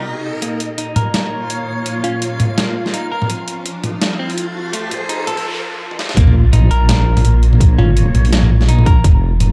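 A deep, up-front wobble bass and hard-clipped electronic kick arrive together at 6.2 seconds for the drop of this spacious, cinematic half-time drum and bass excerpt, after a build-up in which distant bowed cellos sustain vibrato chords with sidechain pumping, a clean picked electric guitar arpeggiates through a filter sweep and dub echo, a reversed, dreamy granular texture swells in the background, a gritty, compressed boom bap sampler-style kit with a big-room snare enters at 0.4 seconds, a bell-like FM electric piano sparkles in a brief flash that returns once more after the drop, and a riser, noise sweep and sub drop heighten the tension over a dark production.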